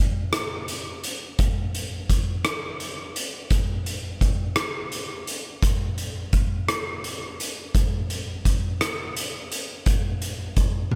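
An oversized, low-tuned acoustic drum kit enters at 0.3 s and carries this brief rock fragment alone until it ends at 11.0 s. The mood is brooding and melancholic, set in a slow 6/8 at 57 BPM counted in dotted quarters, with a straight feel. Hi-hat, kick drum, rim click and toms make up the kit, which sits up front in the mix with a punchy kick. The drums ring in a bright stone room that pumps around each hit, giving the heavy, low-tuned shells a hard, booming weight. The overall recording stays fairly dry, and the passage is cut from a longer piece.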